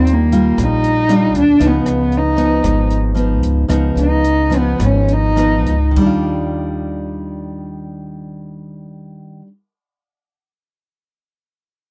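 A straight 4/4 bossa nova pulse at 100-117 BPM sets a breezy, sunny mood in Eb major in this passage cut from a longer piece. A single bowed cello carries the melody as a solo through the opening section, its dark, woody tone shaded with vibrato yet sitting somewhat distant, while the tempo slows from 1.6 seconds onward. Fingerpicked nylon-string guitar sits up front with classical poise and audible finger squeak, moving from Ebmaj9 to Db9 and returning to Ebmaj9 at 6.0 seconds as a new section begins, and it keeps ringing until 9.6 seconds. Pizzicato upright bass with steel strings adds a growly low end, and an open jazz drum kit in a small, airy room supplies crash cymbal, hi-hat, rim click and a boomy kick beneath polished, shadowy cymbals, dropping out soon after the cello. The whole piece has a dry, close 1970s-style studio sound with little reverb.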